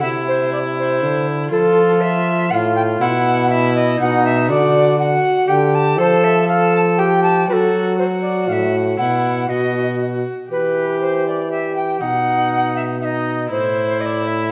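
A pure, woody alto recorder with expressive vibrato sings the melody from a distance in this rustic, solemn renaissance-style consort dance in triple time, cut from a longer piece, over an up-front, reedy viola with a gut-string tone on the second line and a close-miked, warm solo trombone carrying the bass, all three playing throughout in a reverberant recital hall before the harmony turns toward a new phrase at 10.5 seconds.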